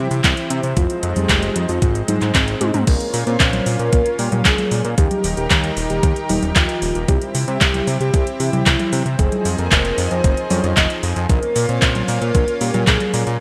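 Italo disco at 114 BPM in Bb dorian, this danceable, melodramatic excerpt from a longer piece moves through chords such as Fm7, Bbm and Eb under a straight 4/4 pulse. A soft octave-layered synth lead carries the melody from C4 to Eb5, its round, full-bodied tone with a sub octave and vibrato, colored by chorus, phaser and delay. Beneath it, a lush unison pad holds airy, detuned sawtooth chords with a soft attack and chorus, while a fat analog bass, saturated and up front, plays with a quick filter pluck. A thumpy, sampler-style electronic kick re-recorded in a large room anchors the beat alongside a tape-warm house kit of metallic hats, cabasa, congas, handclaps, toms and crash cymbal, both treated with studio reverb. A drum fill at 2.6 seconds leads into the second section at 2.9 seconds, and the whole mix sits in a moderate, lush hall reverb with a bright 1980s-style digital production.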